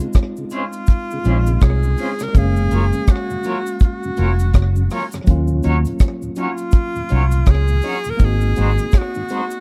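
A dry, up-front reggae drum kit with a tight kick, hi-hat and rim click opens this romantic, tender lovers rock excerpt at 82 BPM in Db major, joined from the start by a worn, slightly out-of-tune electric piano through its built-in speakers and a mellow tonewheel organ on slow rotary speaker sitting in the background, with a faint cabasa close behind. At 0.5 seconds a clear, punchy tenor saxophone with vibrato and tape echo takes the melody while a twangy, clean electric guitar adds tremolo-washed stabs, and a dark, round, foam-muted electric bass enters up front at 1.3 seconds. The chords move from Dbmaj7 through Gbmaj7 and Ebm7 to Ab7, all captured in a close, small-room 1970s-style studio sound.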